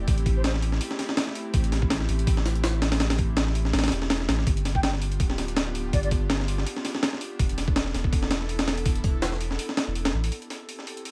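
Vinyl crackle, a breathy, detuned pad with chorus and a deep, round sub bass open this raw, nostalgic drum and bass excerpt in A minor at 164 BPM, moving through Am7, G7 and E7sus4 before returning to Am7 at 10.3 seconds. A gritty, pitched-up breakbeat kit with a thumpy kick, high-tuned snare and tape-like saturation sits up front with light swing and studio reverb, while the sub bass holds sustained notes until 10.3 seconds. A mellow, distant concert flute with a chiffy attack and dub echo drifts in the background, with a brief figure at 0.4 seconds and a phrase from 4.7 to 6.1 seconds.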